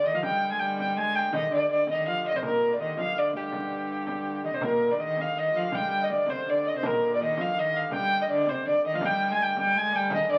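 Through the crackle of a very old 78 rpm record and a small, wet room, this fragment of an ancient, driving medieval dance in triple time puts a woody, distant-sounding fiddle melody up front, with a rich, fretted viola da gamba with soft attack and airy bow beside it, while a ringing, fingerpicked concert harp, a dark, nasal hurdy-gurdy drone and a deep frame drum played with soft hands sit in the background.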